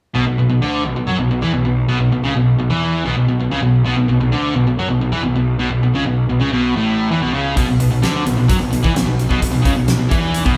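Heavy and driving, this hard rock excerpt rides a straight 4/4 feel on a single B minor chord throughout. Two overdriven electric guitars play the riff from the start, one up front and the other sitting in the background with a touch of spring reverb, both picked with a warm, saturated tone in a low register. Underneath, a fuzz-laden picked electric bass adds a bright, growly, direct-and-amped edge an octave below the guitars. At 7.6 seconds a huge arena drum kit enters up front, with a punchy kick, fat snare and hi-hat in a pumping, hall-like room. The band sounds as if it is playing live together in one large studio space, and the passage is cut from a longer piece.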